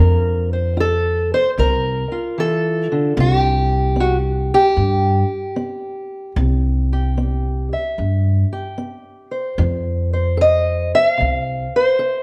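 A loose swing in four carries this laid-back, gritty acoustic country blues, cut from a longer piece and moving from F to C at 3.2 seconds and back to F at 9.6 seconds. Up front, a dark, boxy parlour steel-string guitar, fingerpicked, carries the melody with audible finger squeak, while an upright bass plucked on steel strings adds a woody low line beside it, dropping out at 11.7 seconds. The pair play live together in one room, wrapped in a moderate large-studio reverb.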